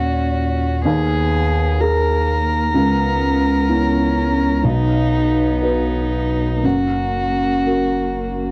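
A felt-muted upright piano anchors this reflective, melancholic neoclassical piece, its thick-felt tone soft, boxy and intimate, sitting up front as it carries the accompaniment across a range from B1 to B4. Alongside it, a single muted violin plays the melody con sordino, its veiled, dark sound shaded with vibrato, while a lone muted cello bowed in the background adds a quieter second line with light vibrato. Beneath them, a deep, round sub bass with a sine-like tone and fast attack holds sustained low notes. The music moves in 6/8 at 62 BPM counted in dotted quarters, with uneven beats and rubato, set in C# dorian and tuned to A4 = 439 Hz. The harmony passes through D#m7, G#madd9/D#, C#m7, B and F#, and the piano, violin and cello all carry a cassette-tape coloring within a home-recorded studio ambience touched by light reverb. This 8.5-second passage is cut from a longer piece, with all four parts playing throughout.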